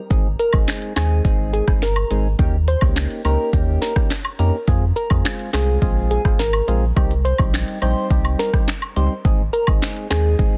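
An electronic afro-pop drum kit sits up front in this bouncy, summery dancehall excerpt at 105 BPM in Ab major, with a deep kick, sharp snare, crisp hi-hats, finger snaps and rim clicks. Beneath it, a round sine sub bass with a fast attack holds sustained low notes, while a hollow, nasal organ adds dark, percussive stabs with a moving notch and a touch of chorus. From 0.4 seconds, a gentle, keys-like FM lead carries the melody in a narrow upper range, its detuned triangle tone softened by chorus and a tape echo. Close, acoustic cabasa and woodblock, with a tube shaker and group handclap, fill in the groove. The harmony moves through Ab, Eb7, Fm and Cm before returning to Ab, and the dry, dense, heavily limited master keeps the whole thing punchy and present.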